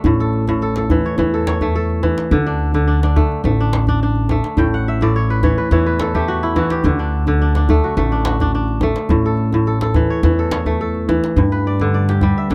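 A dry, close recording in a small room frames this hypnotic West African traditional excerpt at 106 BPM in D major, where a ringing, crisp kora plays arpeggios up front with a fill from 4.6 to 6.8 seconds, a woody, thumpy pizzicato upright bass on gut strings carries the low end, and a medium-tuned djembe struck with hard hands keeps the pulse, before the harmony shifts to G at 11.4 seconds.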